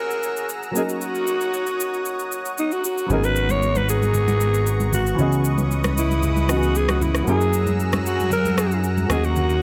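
Late-night and hypnotic, this amapiano excerpt opens with a breathy, raspy alto saxophone carrying the melody up front, its tone touched by vibrato and trailed by tape echo. Beneath it, a worn concert grand piano plays short-sustained accompaniment chords, while a lush, detuned unison pad holds bright sustained harmonies shimmering with chorus. An electronic shaker and rim click set a layered, produced pulse almost from the start, and at 3.1 seconds a fat analog bass arrives thick and up front with a sawtooth bite and a filter sweep, joined by hard-handed congas sitting compressed and saturated in the background. The harmony drifts through extended chords such as F#9, D#m7, G#m11 and C#m9, giving the passage a smoky, suspended quality. Light reverb and a small-room ambience keep the sound intimate.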